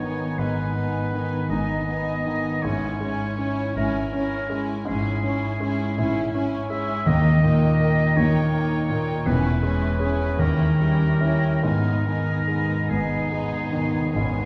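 A clear, up-front concert grand piano carries the melody in this passionate, tragic classical excerpt in G# minor, moving with rubato at 46-56 BPM in 12/8, while background violin sections, one lightly vibrato-touched on the high tune and a lush one on a second line, join a distant oboe, rich violas, very quiet focused cellos and smooth double basses, with round soft-mallet timpani entering at 11.7 s, the ensemble heard from further back in a reverberant scoring-stage space.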